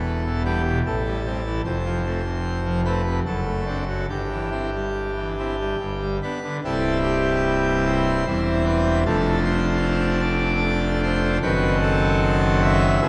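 Majestic and serene, this short classical excerpt is a chorale-style piece for solo pipe organ in three, moving with a flexible rubato feel. The full organ sits up front, its brilliant mixtures and baroque voicing topped with a touch of chiff, spanning deep pedal tones to bright upper notes. A long, wet church reverb and a dark production surround the sound, as the harmony shifts into a new section at 6.6 seconds and comes to rest on a diminished chord near the end.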